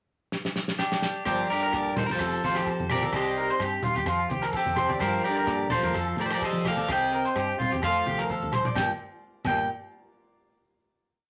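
Danceable and bittersweet, this short highlife guitar band piece in G minor moves at 128 BPM with a swung sixteenth feel. It opens on a drum fill, the lead guitar comes in at 0.8 seconds, most of the band joins at 1.3 seconds and the congas follow at 2.0 seconds, circling Gm7, Fadd9 and Cm until a closing Gm7 chord at 8.8 seconds. Up front, a slightly broken-up, twangy electric guitar plays a motif-based melody of call phrases, partly doubled in thirds, while a bucket-muted trombone adds a veiled, dark harmony line mostly in sixths with vibrato and scooped notes, and a second twangy guitar through a small old amp repeats an arpeggiated ostinato with harmonic tremolo. Underneath, a compressed clean guitar with spring reverb plays syncopated fingerstyle accompaniment, a foam-muted fingered bass drives a syncopated riff, and a tight soul kit with dark cymbals, low-tuned congas played with hard hands, and distant ringing agogo bells complete the groove in a reverberant studio space.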